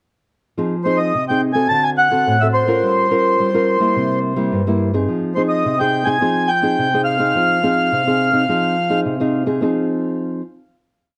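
A fingerpicked nylon-string guitar opens this short, nostalgic samba at 0.6 s, its dark, small acoustic tone sitting up front as it plays a thumb bass under syncopated plucked chords. A moment later the accordion enters with the melody, a reedy, full voice with the rich color of a tone chamber, close-miked and dry yet touched by an analog delay. Its song-like phrases are built from a short motif that carries a bittersweet air over a straight 4/4 feel. The harmony moves from Fm7 through D7, Gm7b5 and C7 before returning to Fm7. The accordion finishes at 9.0 s, and the guitar rings on through the final chord until 10.4 s, framed by a moderate studio reverb and a dark, warm production.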